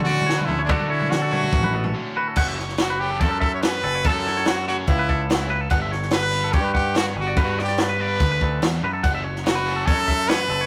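Math rock with a midwest emo lean, this short excerpt moves at 144 BPM in a straight 4/4 with an intricate, playful mood. A brilliant, up-front trumpet carries the melody throughout, its pop-style lead marked by scooped notes. Beneath it, a twangy, clean electric guitar plays background arpeggios with a warbly pitch drift, while a second compressed, twangy guitar supplies accompaniment only until 2.4 seconds, just after a brief break that starts at 1.9 seconds. A growling picked bass, overdriven and direct, sits up front alongside a compact cocktail drum kit with a punchy kick, high-tuned snare, dark cymbals and toms. A very quiet, double-tracked overdriven guitar adds a biting riff underneath. The harmony moves from Dmaj7 to F#m, Gmaj7 and F#m7, and the rough rehearsal-room sound carries light reverb.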